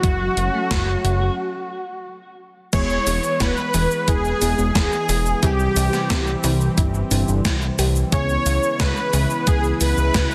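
A thumpy, tape-warm electronic kick and a gated 80s digital drum machine set a straight 4/4 pulse at 89 BPM, with snare drenched in gated reverb alongside hi-hat, shaker and crash cymbal. This nostalgic, uplifting synthwave fragment in E major opens with a fat, thick analog bass pumping to the sidechain beneath a shimmering, chorused pulse-width pad. Up front, a smooth, airy supersaw carries the melody through digital delay, while a bright, twangy clean guitar riff sits in the background until 1.3 seconds, ahead of a short break. From 2.7 seconds the arrangement fills out: a very quiet, round analog pluck arpeggiates, a vintage string machine adds a faint violin second line, and a lush, dreamy FM electric piano with a soft pad layer drops chorused, phased stabs. The chords move from F#m to E, C and C#m7 under light reverb and a dense, heavily limited modern master.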